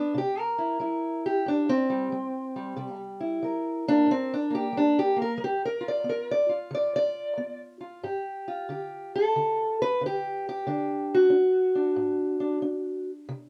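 Acoustic country blues with a soulful, gritty mood, carried by a single fingerpicked steel-string acoustic guitar that plays alone for the whole 13.5-second excerpt in a loping swung feel. The parlour guitar sits up front with a dark, woody, boxy tone and the dull edge of old strings, moving from C7 to G7 and landing on D. A moderate studio reverb gives the instrument a small sense of space.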